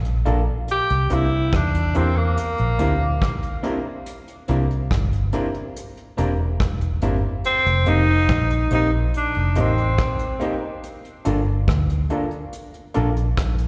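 This lovers rock reggae excerpt moves at an unhurried 71 BPM in straight 4/4, carrying a smooth, longing mood. A dark, round, foam-muted electric bass sits up front beside a soft brush kit with a punchy kick, hi-hat and rim click, its top end rolled off. A boxy grand piano with audible action noise and a slightly broken-up, lo-fi picked electric guitar add accompaniment and stabs, both touched with slapback echo. The tenor saxophone carries the melody from 0.7 to 10.4 seconds, pop-styled with light vibrato, sounding distant and roomy yet up front, with tape and slapback echo. The harmony passes from a rootless Gm7 through C7 and F7sus4 before returning to Gm7. The whole excerpt comes across like a live gig heard through the venue's PA, with recital-hall reverb and a top end that stops at 10.5 kHz.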